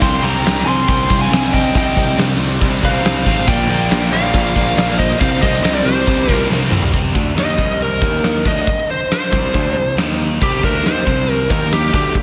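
A bluesy overdriven lead guitar leads this heavy, aggressive hard rock excerpt in C minor at 138 BPM, its distorted tone carrying the melody across a range of G4 to C6 with a slapback echo, and taking a solo from 6.9 seconds to the end. Beneath it, a twangy, compressed second lead guitar with a slightly broken-up edge sits in the background and stops at 6.5 seconds, just as a drum fill leads into the solo. Three picked rhythm guitars share the riff: a crunchy overdriven guitar with phaser and slapback echo, a very quiet cranked stack guitar, and a very quiet double-tracked high-gain guitar that drops out at 6.9 seconds. A growly, punchy picked electric bass holds the low end, while a huge acoustic drum kit sits up front with a punchy kick, medium-tuned snare, bright cymbals, hi-hat, crash and toms, and a pumping room sound. The harmony moves between C5 and Eb5 power chords, a Bb chord and C minor, and a lush hall reverb gives the whole mix a big arena sound.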